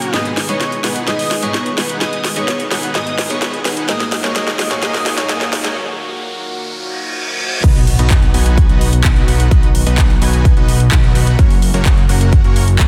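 This triumphant, uplifting festival progressive house excerpt opens at 128 BPM in 4/4 with an airy, dreamy lead melody floating over a lush, bright unison pad, a huge detuned supersaw riff and a picked steel-string acoustic guitar with fresh strings and audible finger squeak, all moving through G#m and D#m. An overdriven house kit of cracking snare, bright hats, handclaps and crash cymbal runs a drum fill across the build-up while filter sweeps move beneath it, and the pad and supersaw pulse with sidechain pumping. The lead and guitar drop out at 5.7 seconds for a short break, as a background riser and reverse cymbal carry the tension forward. At 7.6 seconds the drop lands with an impact, a punchy, up-front electronic kick and a fat, thick analog bass that sweeps its filter, shifting the harmony to B and then F#. A moderate hall reverb lends space, and the dense, heavily limited master keeps the whole track loud and polished.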